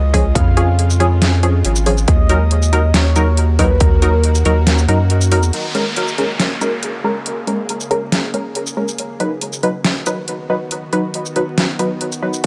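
A half-time 4/4 feel anchors this dark, brooding deep dubstep fragment, where an overdriven kit with a punchy kick, deep snare, hi-hat and shaker sits up front beside a thick, saturated sub bass that drops away at 5.5 seconds, while muted, detuned chord stabs with 12-bit sampler crunch and dub echo recur throughout, a tense, string-like drone hangs in the background, a soft, breathy flute-like lead floats with chorus and vibrato, and a downlifter and riser enter at 5.5 seconds, all in a dry hardware recording with vinyl crackle.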